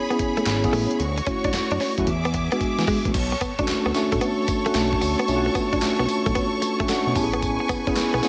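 New jack swing R&B, slick and bouncy at 112 BPM in B dorian with a swung sixteenth feel, built on an up-front mellow tine electric piano, lush bowed studio strings with vibrato, a direct-recorded clean picked guitar riff with subtle chorus tucked in the background, a fat, detuned sawtooth analog bass entering at 0.5 seconds, and a gritty, overdriven sampler-style drum kit with thumpy kick, handclaps, tambourine and gated reverb that plays a fill from 2.1 seconds before the electric piano adds its own fill at 6.6 seconds, all set in light digital ambience as a cut from a longer piece.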